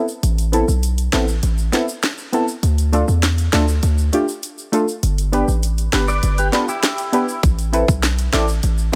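The sound is dry and close, with the main parts pushed up front in this short dancehall excerpt that carries a tough, sultry mood in a straight four-beat groove. A deep, mellow synth chord stab carries the harmony from the start, its soft, evolving tone shaped by a filter sweep, chorus and sidechain pumping as it moves through Amadd9, Dm and G. Underneath, a hard-hitting 808-style bass gives heavy, punchy sine lows with a noisy edge, while an electronic island pop drum kit supplies a tight kick, sharp snare, rim click and dark hi-hats. A bright egg shaker, played with soft hands in a small room, sits in the background. The passage works as a break, and at 6.1 seconds a clean, twangy electric guitar slips in with compressed, picked arpeggios coloured by ensemble chorus, dropping out at 7.4 seconds as the harmony returns to Amadd9.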